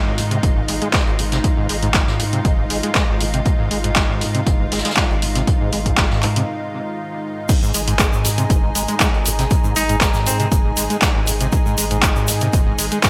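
Acid house at 119 BPM in 4/4 with a raw, playful mood: a squelchy, gritty overdriven acid bass riff sits behind a lush detuned pad and a round sine sub bass, all pumping against an up-front punchy electronic kick, a tape-warm analog drum machine with handclaps, crash and hi-hat, and a distant brushed jazz kit, until a break at 6.5 seconds gives way to a drop at 7.5 seconds where a grainy tube shaker and a warbling, nostalgic lo-fi pad join and a bright alto saxophone adds a short vibrato phrase with delay at 9.8 seconds, all within a bright 1980s-style digital production with light small-room reverb.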